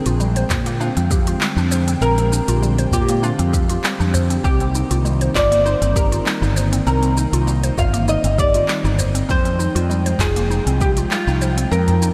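Soaked in a lush hall reverb, this dreamy, hypnotic organic downtempo excerpt at 99 BPM in C minor sets a plectrum-plucked, double-strung oud melody with diffuse ambient delay over an airy, breathy pad with sidechain pumping and woody, warbling mallet-like synth pluck arpeggios. Beneath them sit a dark, round fretless electric bass up front, smooth-hatted deep house drums with handclaps and shaker, a deep electronic kick from 0.5 s, and a very quiet, dry udu.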